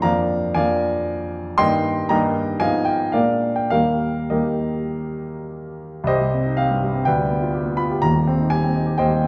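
Hopeful and warm, this romantic character piece for solo piano unfolds with a rubato feel at a flexible tempo of 97-126 BPM in 4/4, beginning in Eb major before shifting to C minor at 6.1 s. The warm concert grand sits up front with a deep bass reaching down to Eb1, moving from a dominant-seventh opening through a settled cadence on Eb. A reverberant recital hall and dark production wrap this brief cut from a longer piece in a warm glow.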